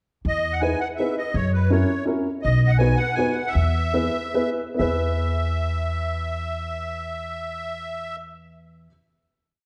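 A reedy, shimmering musette accordion carries the motif-based melody in period phrases through this short, whirling and charming musette waltz in E major, moving in 3/4 at 137-166 BPM. A dark, mellow upright piano supplies close-voiced backbeat chords, while a woody pizzicato upright bass plays root and fifth on the main beats, all three sitting up front in a moderate recital hall reverb. The tempo slows from 2.4 to 4.8 seconds, where the piece settles onto a final chord.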